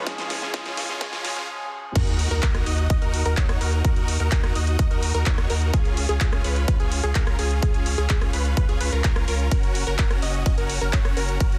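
This uplifting, triumphant festival progressive house excerpt at 127 BPM opens on a build-up, with a clear, intimate grand piano and a bright, detuned supersaw lead riff, both pumping and trailed by dub echo, over a background riser and a drum fill with a huge snare. After a brief stop at 1.5 seconds, the drop lands at 2.0 seconds with an impact: a punchy, up-front kick sits alongside the kit's claps, hats and cymbals, a deep, saturated sub bass pumps underneath, and a lush, wave-folded pluck spins arpeggios as the chords move from D#m to C# and F#. The dense, heavily limited master keeps the track loud and forward.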